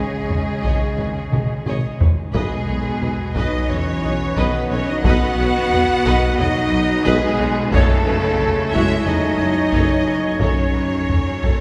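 A taiko ensemble struck with heavy sticks drives this dramatic, relentless excerpt of epic orchestral film score, entering at 0.3 seconds and breaking into a fill from 1.3 to 2.4 seconds. It moves at 89 BPM in a straight 4/4, with chords shifting from G#sus4 to B6 and then F#m at 7.7 seconds. A mellow French horn section sits prominently on sustained chords, while a roomy woodwind section holds chords farther back. Lush, vibrato-rich strings fill the background: a smooth symphonic violin section carries the melody, a distant studio violin section traces a second line, and violas supply accompaniment. The bass is built from a dark tuba, a symphonic cello section and a very quiet double bass section. The whole orchestra sits in a church-like hall with a long, wet cathedral reverb, and a huge, bright reverse cymbal enters barely audibly at 10.4 seconds.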